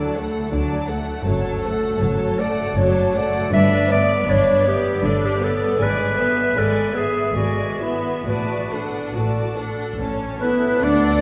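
A roomy, up-front clarinet carries a tender second line in this lyrical classical piece in three, with flexible rubato, alongside a smooth bowed violin melody, a woody, darker violin section, a rich, focused viola section, an expressive cello section and lush double basses, all bathed in cathedral reverb, before a pure-toned flute, an oboe and a tight, sombre horn section enter at 10.4 s and a tuba at 10.8 s.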